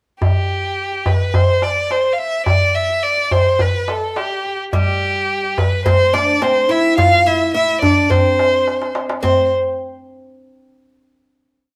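A wet stone-room reverb surrounds this live ensemble, playing a festive complete piece of Arabic maqam music in C maqam ajam at 106 BPM in a straight 4/4. An up-front bowed violin with a rich tone sings a modal melody full of ornaments, vibrato and portamento over a crisp, deep metal-shell darbuka struck with hard hands in a low-and-high stroke pattern. At 4.7 seconds a woody, fretless, plectrum-plucked oud with double strings joins on the same line with its own ornaments, before a drum fill at 8.7 seconds leads to a final note at 9.2 seconds.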